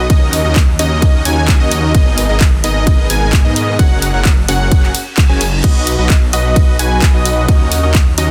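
A dense, heavily limited modern master in digital ambience carries this anthemic, uplifting festival progressive house excerpt at 130 BPM in B major, where a huge compressed supersaw riff and a bold, mellow unison lead playing arpeggios both pump and throw dub echoes over a lush, saturated detuned saw bass with chorus, a punchy, tape-warm electronic kick sits up front from 0.1 seconds with a layered big-room kit of claps, hi-hat, ride and crash, and a reverse cymbal enters in the background at 5.0 seconds as the chords move from D#m7 through G#madd9 and F#add9 to B.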